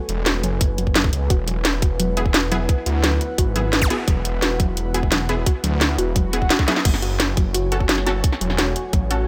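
A deep, moody pad with sidechain pumping and a very quiet, breathy pad open this futuristic, dark technical drum and bass excerpt at 173 BPM. They are joined at once by a thick, detuned saw bass and a kit with cracking snare and metallic hats up front, with a tight electronic kick arriving at 0.6 s. A warbling, lo-fi pluck plays arpeggios through a filter sweep and tape echo in the background. From 2.2 s, bold, bright orchestra-hit-like stabs cut through with reverb and echo over chords moving from F#m to E and back. An electronic zap at 3.8 s and a swell from 6.3 s lead into a drum fill at 6.6 s, all set in a digital ambience.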